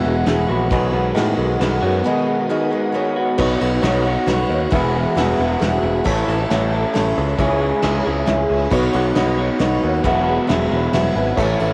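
A reedy electric piano fill opens this jangly, open-road folk rock and heartland rock excerpt in E major, in a straight 3/4 at 135 BPM, alongside a shimmering, octave-doubled twelve-string acoustic guitar and a twangy, slightly broken-up electric guitar riff, with soft brush drums joining at 0.3 seconds. A growly, up-front picked electric bass anchors the low end while a very quiet tonewheel organ holds sustained chords through a slow rotary speaker, and the electric piano sits in the background with spring reverb. The home cassette recording lends tape color to the guitars, electric piano and small-room drums under light reverb, as the chords move from Eadd9 through A and C#m back to Eadd9.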